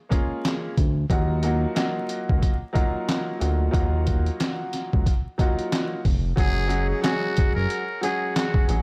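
Dark and reflective, this boom-bap hip-hop excerpt moves at 91 BPM in Eb minor with a swung sixteenth feel, built on a woody, intimate upright piano with audible action noise and cassette-tape colouring, set over a muffled, pitched-down sampler-style kit with a thumpy kick, handclaps, hi-hat and overdriven grit, while a smooth sawtooth-and-square synth bass with vibrato joins at 0.8 seconds. At 6.4 seconds the harmony shifts from Bbm7 and Ebmadd9 to Gbsus2 as a buzzy, breathy trumpet with a metal mute enters with a jazz-style solo of scooped, growling notes through digital delay, backed by a very quiet tonewheel organ with key click. The dry production carries vinyl crackle and a dark, warm character.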